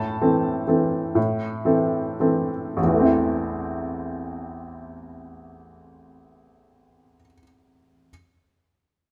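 A clear, woody upright piano plays alone from the start in this nostalgic, elegant classical waltz in A minor and 3/4, moving with rubato between 102 and 134 BPM, opening on an A minor chord and slowing down through the first 2.8 seconds before a new section arrives, its short-sustained notes spanning A1 to A5, sitting up front under close, detailed microphones in a moderate recital-hall reverb, all cut from a longer piece.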